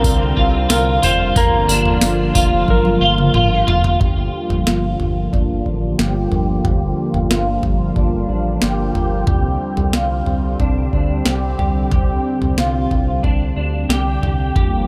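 A dark, clean lap steel guitar plays a slide melody with tape echo to open this haunting, ethereal dream pop excerpt in G minor at 91 BPM, joined from the start by a smooth, detuned analog pad with chorus and a low-pass filter, clean picked electric guitar arpeggios with ensemble chorus, filtering and tape echo, a round, deep analog bass, and a booming, overdriven analog drum machine with a crisp snare, tambourine and toms; a drum fill begins at 2.7 seconds, the lap steel stops at 3.6 seconds, and a filter sweep runs from 4.0 seconds as the harmony moves between Csus2 and Gm7 under light digital ambience.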